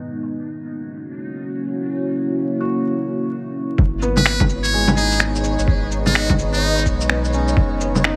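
A felt-muted upright piano and a deep, moody pad open this rainy, nocturnal future garage piece together, passing through a filter sweep in G# minor at 127 BPM, with a swung 16th-note feel and a bed of vinyl crackle. The piano is soft and intimate, with audible action noise and dub echo trailing its notes. The detuned sawtooth pad sits up front with chorus and a long release, and both pump against the sidechain. At 3.8 seconds the beat arrives: a compressed, pitched-down kick with a thumpy, tape-warm body, muffled electronic bongos, cabasa, shaker and finger snaps placed up front, and a round, soft sub bass. A brilliant, buzzy trumpet with a metal mute enters at 4.2 seconds for a close-miked, forceful solo phrase with vibrato and dub echo, while a flickering, grainy texture hovers in the background. The harmony moves from F#7 to G#m and back to F#7 as this section of a longer track comes to its cut.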